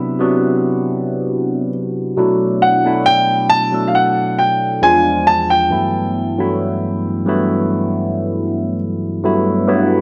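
A polished baby grand piano carries the melody high in its register, present and up front, before stopping at 8.8 seconds and leaving a barky, lightly overdriven tine electric piano to play alone until 10.0 seconds. That electric piano supplies the accompaniment through a combo amp with a phaser, its bright tone sitting close beside the grand as the harmony moves from Cmaj9 through Bm7 and E7b9 to Gmaj13. This smooth, warm slow R&B fragment, cut from a longer piece, has a gentle swing and a light reverb with small-room ambience.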